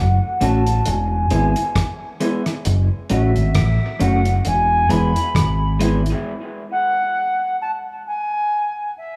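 A distant, pure-toned silver flute and a round, punchy fingered bass open this hypnotic dub reggae excerpt together, the flute carrying the melody high above while the dark bass sits up front in the low register. At 0.4 seconds a slightly broken-up, compressed electric guitar from a small old amp joins with picked accompaniment, alongside a damped, dry 70s drum kit of hi-hat, tight kick and rim click with a rolled-off top. The slow 67 BPM groove swings gently on the sixteenths as the harmony sways between F#m and E, giving the piece a meditative, unhurried pull. Dub echo trails both the flute and the guitar, and a low-pass filter sweeps across the flute for the whole passage, set in a light, small-room ambience. At 6.2 seconds the band stops and the crisp-attacked, expressive flute carries on alone over the break until 9.2 seconds.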